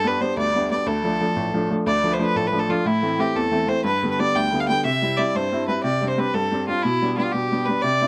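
In a dark, lightly reverberant production, this excerpt of spirited, driving Celtic folk moves at 121 BPM in 6/8 with a straight feel, in D dorian. A single bowed fiddle carries the melody up front with a rich, nasal, reedy gut-string tone, while an upright piano accompanies just as prominently, its clear, woody sound worn and slightly detuned. Both play through the full 8.1 seconds, over chords that pass from G and Dm through Am, C and Csus2 to G/B.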